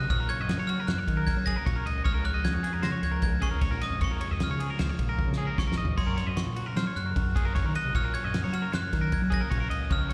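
Set in a straight 5/4 metre, this intricate, bright fragment of math rock and midwest emo is cut from a longer piece and heard live through a venue's PA in a recital-hall space. A loose indie drum kit sits up front from 0.1 seconds, its fat snare, tight kick, toms, crash and ride carrying a rolled-off top and a small-room feel, with a drum fill between 5.2 and 6.0 seconds. Underneath, a growling fingered electric bass with overdrive drives the low end, while a double-tracked, overdriven semi-hollow guitar plays a picked riff with hollow-body grit and a slapback echo. A clean, twangy electric guitar picks arpeggios higher up, also touched with slapback, and a glockenspiel struck with brass mallets carries the melody in a sparkling, bell-like, ringing voice with slapback and tape echo. The harmony moves from Gbadd9 to Db69 and settles on Gb at 6.0 seconds.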